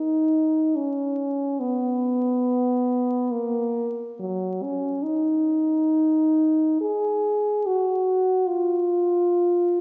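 A lone French horn opens the recording, its mellow tone carrying a smooth top as it sounds in free time from 0.0 to 9.8 seconds. This is a classical, expressive piece for unaccompanied horn, and the brief passage, cut from a longer work, feels serene and nostalgic. The horn moves between F#3 and G#4 and sits up front, tuned to A4 = 442 Hz. A wet concert hall reverb with a 1.8-second decay surrounds the sound, and the room is heard from further back. Vinyl crackle adds an aged patina to the performance.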